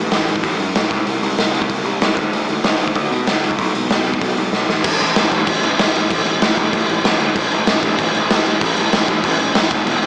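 Dry and boxed-in like a small speaker, this rebellious, energetic punk rock excerpt charges along at 191 BPM in a straight 4/4, with a growly, overdriven fuzz picked electric bass ranging from E1 to B2 under a gritty, saturated garage drum kit of punchy kick, medium-tuned snare, hi-hat and crash sitting up front with a rolled-off top, and a drum fill at 4.5 s carries the music into a new section at 4.8 s.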